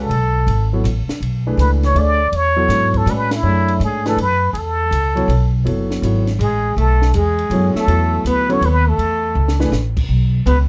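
A swinging 3/4 pulse at 162 BPM drives this intense, searching modal jazz excerpt in B dorian, with a woody pizzicato upright bass up front and a dark, smooth compact cocktail drum kit with a high-tuned snare and punchy kick. A plunger-muted trumpet carries the breathy, wah-wah melody with scooped notes and light vibrato over a natural-sounding grand piano, and the band hits an accent at 3.3 seconds. At 6.4 seconds a raspy, growling alto saxophone enters with a close-miked second line, and a drum fill arrives at 9.4 seconds, all in a light reverb.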